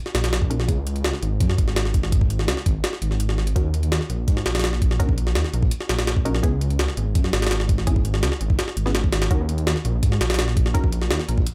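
Drum and bass in a jungle vein at 167 BPM in Eb phrygian, this frenetic, raw excerpt from a longer piece drives a gritty, pitched-up sampler kit with thumpy kick and high-tuned snare in studio reverb over a thick, beating detuned saw bass, while muted dub chord stabs with analog chorus and dub echo flicker at 0.5 seconds, fall away in a break from 2.8 to 3.6 seconds, then return under a filter sweep as the harmony shifts between Db5 and Eb5.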